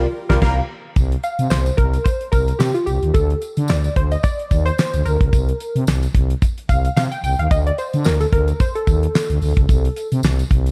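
Early-eighties boogie funk with a slick, funky mood, this cut opens on a brief band accent, with a short hit from the background horn section at 0.3 s, before an analog polysynth solo takes over from 1.0 s. Underneath, a punchy, detuned polysynth comp with chorus and a filter pluck rides over a growling, thick FM bass, both up front. A dry, damped 70s drum kit with a fat snare, tight kick and handclaps drives the groove, while a jingly tambourine sits far back in a dark, warm small-room production.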